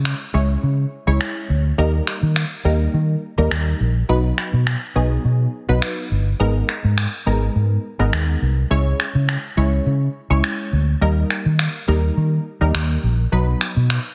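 Energetic and confident, this dance-pop excerpt moves at 104 BPM in a straight 4/4, cut from a longer piece. A dark, round, foam-muted vintage electric bass, fingered and amped, sits up front and carries the most weight in the mix. A warm, full-bodied chord stab built from detuned sawtooth waves plays the accompaniment with a fast-attack filter pluck that decays into a mellow tail, coloured by chorus and phaser. Layered electronic finger snaps join at 0.1 s, re-recorded in a small room and placed up front, with soft clipping giving the snare its bite. The harmony cycles through C#m, D#, B and G#madd9 before returning to C#m, all under light reverb and a dense, heavily limited modern master.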